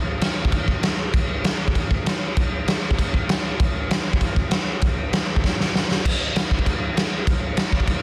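A dense, heavily limited master with light reverb puts a gritty, saturated acoustic drum kit up front in a bright stone room, its fat snare, punchy kick and crash cymbals driving a straight 196 BPM punk beat in 4/4. The angry, urgent groove starts at 0.2 seconds, breaks into a drum fill at 5.4 seconds that leads into a new section, and stops at 7.9 seconds in this short cut from a longer piece.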